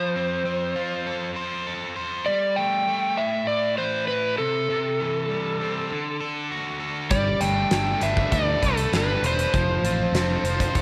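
A straight 4/4 pulse at 99 BPM drives this sunny, driving classic rock passage in G major, where an up-front, overdriven slide guitar sings a warm melody through tape echo over a bright, cranked stack guitar riff touched with spring reverb, until at 7.1 s a second distorted electric guitar riff, a growly picked bass and a huge arena drum kit with a fat snare and punchy kick join in, inside a moderate echo chamber.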